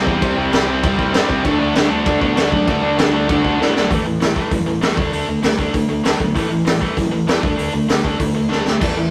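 Punk rock at 196 BPM in a straight 4/4, rowdy and rebellious, cut from a longer piece and captured as a rough rehearsal-room recording with light reverb. An up-front, bright, tight distorted guitar drives the riff throughout. Behind it, a lo-fi overdriven garage guitar and a double-tracked fuzz guitar thicken the opening before dropping out at 3.9 seconds, while a growly picked bass sits in the background. A gritty, boomy garage drum kit with a high-tuned snare and rolled-off top pounds out crash, hi-hat, kick and snare, with fills near 3.6 and 8.5 seconds.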